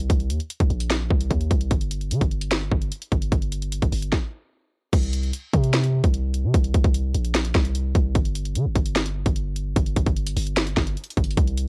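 Riding a half-time trap groove at 149 BPM in 4/4, this menacing, dark hip hop cut pairs an overdriven electronic drum kit of hard-clipped kick, sharp snare, bright hats and crash cymbal with a deep, mellow, sine-toned 808-style bass that sustains long from G1 to D3, both up front in a dry, cassette-recorded home sound, with a stop from 4.1 to 4.9 seconds before the second section kicks in.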